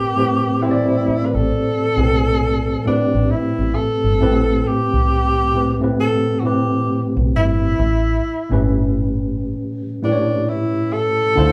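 A breathy tenor saxophone carries a scooped, vibrato-laden jazz melody up front over a worn, slightly out-of-tune electric piano with light overdrive, joined at 1.1 s by a dark, round, punchy, foam-muted fingered bass, in this introspective, late-night neo-soul R&B excerpt that moves from Am9 to A7 at 7.8 s, played live by a band in a small room with light reverb.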